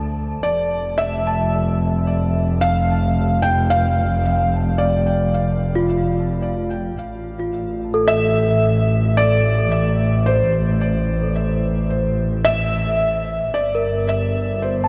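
Ambient and serene, this reflective excerpt drifts at 55 BPM in 3/4. Delicate, bell-like celesta arpeggios, touched with subtle chorus and delay, float over a bowed double bass section that is rich with light vibrato and tube saturation. From 0.4 s, a felt-muted upright piano carries a mellow, intimate melody with audible action noise and its own delay, while the harmony moves from F6 through Am to Gm at 13.5 s, all soaked in a huge, dreamy reverb with a 7.7-second tail.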